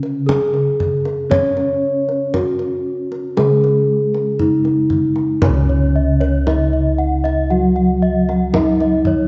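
Serene Javanese gamelan opens with a mellow, dark bronze metallophone playing the melody up front with padded mallets, over a softer, airy metallophone accompaniment whose paired tuning produces shimmering beats, round, bright bossed gongs in the bass, and a deep, band-limited kendang played with soft hands. At 5.4 s a third bronze metallophone joins with high arpeggios, its wooden mallet and paired tuning adding a ringing shimmer. The ensemble sits in a moderate stage reverb.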